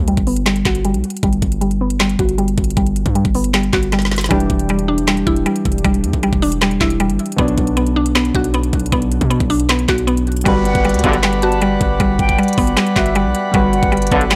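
Trap hip hop in G major at 156 BPM with a wistful, dreamy half-time feel, cut from a longer piece, where a bright, woody FM mallet pluck plays chorused, delayed arpeggios up front over a heavy sine 808 bass and an up-front trap kit of knocking kick, crisp hats, handclaps and snare; warbling, nostalgic lo-fi synth keys enter at 4.3 seconds after a filter sweep and drum fill; and from 10.5 seconds a reedy, breathing pedal harmonium sustains chords beneath clear classical brass ensemble stabs and a very quiet downlifter, joined at 10.7 seconds by a soft, airy wooden flute second line in the background, captured in a dry, gritty recording.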